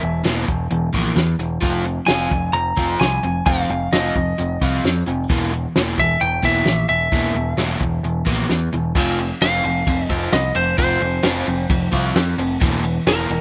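A straight 4/4 pulse at 131 BPM drives this restless, bittersweet indie rock excerpt, where an up-front acoustic drum kit played with bundle sticks, with its punchy kick, fat snare and dark cymbals, backs a bright, double-tracked crunchy guitar riff and a growling, overdriven picked bass over chords moving from E(b5, no3) to Fm7, while a slightly broken-up, compressed lead guitar carries the melody throughout and breaks into a solo at 9.0 seconds over F5 and a rootless C7/E, all in a dry, roomless outdoor sound.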